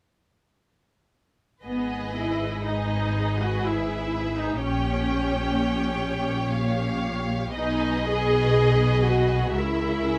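At 1.6 seconds a full-bodied viola section, set up front, enters alongside a second violin line with a soft attack, establishing a solemn, elegiac tone in G# minor. At 1.7 seconds a lush, distant first violin section takes the melody, while cellos and double basses share the bass. This is a slow romantic movement for string orchestra in 3/4, at around 56-63 BPM, shaped with rubato. Every bowed section sings with vibrato: the cellos add expressive portamento, and the basses lay a smooth, even foundation. Light reverb surrounds the strings as the harmony passes from G#m through diminished chords, and the passage, cut from a longer piece, ends at 10.2 seconds.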